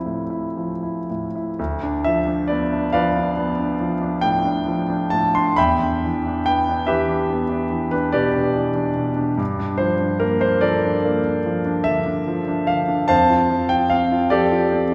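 A clear, intimate grand piano, its action noise audible and its notes sustaining long, opens this hazy, nocturnal impressionist solo excerpt in D minor, drifting in a rubato 9/8 at 37-50 BPM through Dm11, Dm6, Em7, Gm9 and Fadd9 between D2 and C6, cloaked in the wet reverb of a concert hall heard from further back in the room.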